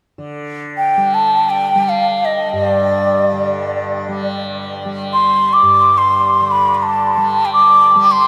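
A softly plucked, buzzing tanpura drone shimmers from 0.2 seconds beneath a breathy, hollow bansuri that enters up front at 0.8 seconds with a tongued, vibrato-laden melody trailed by tape echo, the whole serene, devotional excerpt of Indian classical music unfolding in free time within a dreamy mix soaked in huge ambient reverb.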